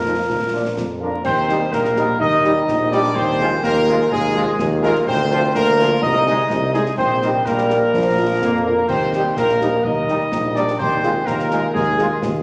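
A festive, proud military-style march for wind band in Eb major, moving at 126 BPM in a straight 2/4, with the clear trumpet section carrying the melody up front while a distant, roomy euphonium with light vibrato sings a second line and a solo tuba anchors the bass. Soft-attack trombones sustain chords in the background, a very quiet, tight French horn section fills in mellow accompaniment, and close, dry concert snare, bass drum and clash cymbals with bright cymbals enter at 0.3 s. The band sits in a wet scoring-stage reverb under a layer of vinyl crackle, and this cut from a longer piece moves through Eb, Fm7/Eb and Bb harmonies before ending at 12.4 s.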